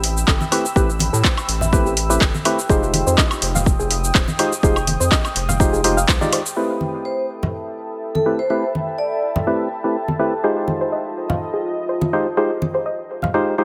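Deep house at 124 BPM in A minor, this excerpt carries a deep, warm mood with a light swing on the sixteenths, moving between Am7 and Fm7. A moody, detuned sawtooth pad holds sustained chords throughout, while a hollow, organ-like stab sits up front with chorus and delay, its filter swept from 6.6 s onward. A round, wave-folded analog bass with tube saturation and an overdriven deep house kit of metallic hats, handclaps, shaker and woodblock drive the opening, joined at 0.3 s by a deep, overdriven electronic kick re-recorded in a large room; bass, kit and kick all drop out between 6.2 and 6.5 s. Bright, low-tuned congas played with hard hands enter at 0.4 s and continue through the rest of the passage, and a soft, dark pluck with a cassette-tape tint traces arpeggios in the background, returning at 10.4 s. In the second half a close-miked vibraphone with soft mallets offers a brief ringing melody through dub echo, while the pad, stab and pluck breathe with sidechain pumping under a light reverb.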